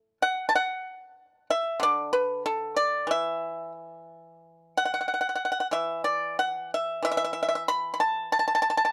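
Elegant and serene, this brief rubato excerpt of Chinese traditional music features a solo pipa, bright and percussive under fingerpicks, ranging from D3 to B5 up front in a dry, close 1970s-style studio sound across its 8.9 seconds.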